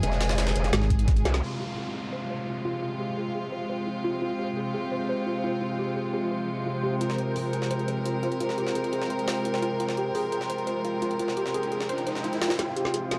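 The beat runs in a straight four, carried at first by a drum and bass kit with a woody snare and metallic hats, a gritty, pitched-up jungle sampler-style kit with a high-tuned snare, and a brief overdriven, knocking electronic kick. This dark, mechanical piece of technical drum and bass, cut from a longer track, opens over an F minor chord with an aggressive, saturated growl bass and a short, metallic FM wobble bass, while a close, earthy chamber string section holds rich bowed chords with light vibrato, filtered and pumping under the sidechain throughout. After a drum fill, the basses and the first kit drop out at 1.4 seconds, and a soft, round pluck takes over with dark, detuned arpeggios sitting in the background, bathed in lush chorus and delay while a filter sweeps across it. A cloudy, evolving granular pad drifts in at 2.3 seconds with its own blurred reverb, electronic downlifters and risers mark the transitions, and the sampler-style kit returns at 7.0 seconds before the original kit closes with a fill. 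The production is dark and warm, set in a moderate digital room ambience.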